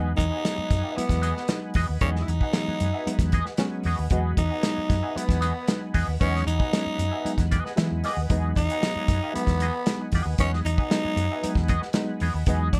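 Over a straight 4/4 funk groove at 115 BPM, a cool, sly 12.8-second cut from a longer piece sits on an Emaj9 chord: a warm soul drum kit, up front with tight kick and rolled-off top, and a round, punchy hollow-body bass carry the groove; a bright, clean semi-hollow guitar with wah and harmonic tremolo and a reedy, worn electric piano with overdrive and fast tremolo supply stabs and accompaniment; a dark tonewheel organ holds chords through slow rotary speaker in the background; a gritty, breathy tenor saxophone growls the melody from 0.2 seconds; and a distant, roomy horn section adds a brief second line from 7.6 to 8.2 seconds inside a band accent, all under light reverb.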